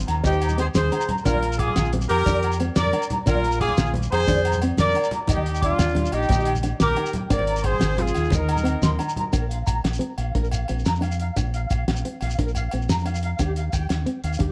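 A straight 12/8 groove at 119 BPM drives this carefree, danceable highlife excerpt in Bb mixolydian, built on a cloth-damped, muffled drum kit with a fat snare and tight kick, a round, punchy fingered bass up front, ringing agogo bells, grainy shekere, and low-tuned congas in the background that drop out at 9.2 s. A fingerpicked jumbo acoustic guitar and a twangy, slightly broken-up electric guitar playing arpeggios through tremolo and analog delay fill out the chords, which move through Abadd9, Bb and Ebadd9. A tight horn section with light vibrato carries the melody up front until 9.0 s, after which the band continues into a new section in a small room.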